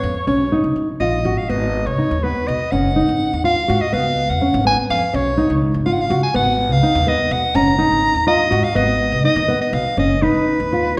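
Contemporary instrumental chamber music in 5/4 at 124 BPM, with a straight feel and a restless, playful mood, cut from a longer piece and tuned to A4 = 441 Hz. A breathy soprano saxophone carries the solo melody in a jazz style, up front and present, its subtone colored with vibrato and scooped notes. Beneath it, a dark, full-bodied nylon-string guitar plays thumb-plucked classical arpeggios, also placed up front. An upright bass with gut strings holds the low end in woody, thumpy pizzicato. The harmony moves between Db7 and Abm7 across the roughly 11 seconds, all three players sounding from the start. A recital hall reverb with a 1.4-second decay gives the whole a resonant, church-like space.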